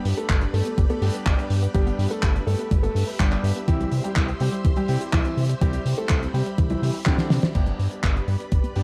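A vintage, smooth grand piano carries the melody through this romantic, sunny italo disco excerpt, touched with digital delay, until it drops out at 7.4 s. Beneath it, a lush string machine holds sustained chords with a slow attack, sub octave and ensemble chorus, while a punchy, detuned unison pluck runs arpeggios in the background through cassette tape and digital delay. A clear, clangy electric grand piano adds short stabs, and a round, deep analog bass with a fast attack and a hint of ring modulation anchors the low end. The straight drive comes from a thumpy, sampler-style electronic kick alongside a dry, dark 70s kit with a fat snare, handclaps, hi-hat and crash, which plays a fill from 7.1 s into the closing section at 7.6 s. The harmony moves from G to C and back to G, all within a dark production bathed in light studio reverb.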